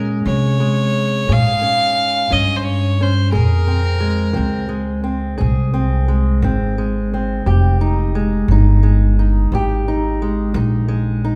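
A wet recital-hall reverb surrounds this brief, brooding piece of acoustic country blues, recorded in a church or concert hall and cut from a longer performance. It moves slowly at 58 BPM in 12/8 with a straight feel, its mournful harmony sitting on Bbm9 before shifting to Fm9 at 7.5 seconds. An old ladder-braced acoustic guitar, fingerpicked with dark, aged strings and a boxy body, carries the accompaniment up front throughout. Beside it, an upright bass plucked pizzicato on steel strings gives a thumpy, woody low end. A single bowed fiddle with a nasal, reedy gut-string tone sings the melody only from 0.3 to 4.7 seconds, leaving guitar and bass to carry the rest of the passage.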